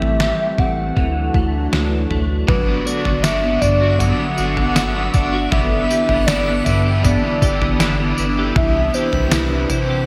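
Floating and blissful, this dream pop excerpt drifts at 79 BPM in G major, with a hollow, woody clarinet-like synth lead carrying the melody over a swirling phased analog pad, clean electric guitar arpeggios treated with ensemble chorus and digital delay, and a round sine sub bass. An up-front, thumpy detuned 8-bit drum machine with overdrive and gated reverb drives the kick, snare, tambourine and toms, while a bright, tremolo-laced overdriven electric guitar joins at 2.5 s and a reversed, granular swelling texture swells softly in the background from 3.9 s. The bright 1980s-style digital production sits in a lush hall reverb as the chords move from Am7 and Dadd9 to a long Gmaj7 before settling on Cmaj7.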